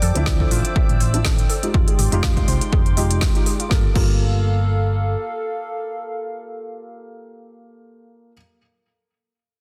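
Moody and warm, this deep house fragment opens on a drop led by a dry, punchy electronic kick up front and a kit of woody snare, smooth hats and crash cymbal, both gone by 4.1 seconds, while a round, tube-saturated hollow-body electric bass pumps beneath them until 5.1 seconds. A hollow, flute-like pad holds sustained chords moving from Dm9 through Fm9 to Gm9, joined in the background by a warbling, lo-fi pluck tracing delayed arpeggios and a shimmering vintage string-machine violin layer that ends at 3.7 seconds. Stabs from a felt-muted upright piano, intimate and dark with tape echo, carry on to the end of the clip, all in a dense, heavily limited mix with little reverb.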